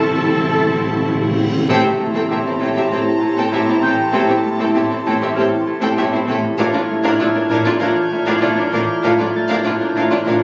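Heard through a phone in a reverberant hall, this brief cut from a longer suspense film score carries vinyl crackle, club-style reverb and a squeezed, compressed sheen. The mood is eerie and mysterious at 98 BPM in A phrygian, moving from Am/C to Am7 and then Bb/A. An up-front, bright Celtic harp riff leads the texture, while a mellow concert harp rings high above it and a distant, even violin section holds a smooth upper layer. Beneath them, a lush violin section carries the soft-attacked, expressive melody, a focused studio violin section plays a second line, and a very quiet, roomy clarinet offers its own line only briefly. An intense viola section, expressive cello section and dark, woody double bass section fill out the bowed strings with vibrato, while a tight French horn section sustains chords from afar. Hard-mallet timpani open with a fill until 1.7 s, a huge, dark reverse cymbal and impact lands just as the band accents, and from 2.1 s a warbling, detuned, lo-fi tape-like pad with chorus and built-in reverb spreads a nostalgic haze in the background.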